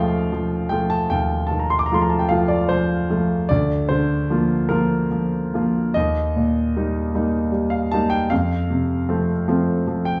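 A warm concert grand piano, smooth and vintage in tone with a deep bass, carries this romantic classical nocturne alone, moving from F7/Eb through Bb/D and Eb to F across about 10.2 seconds. The mood is nostalgic and dreamy, with a slow, rubato 12/8 pulse around 51 BPM in dotted quarters and a range reaching from D2 to D6. A large studio reverb places the listener further back in the room, and the passage is cut from a longer piece.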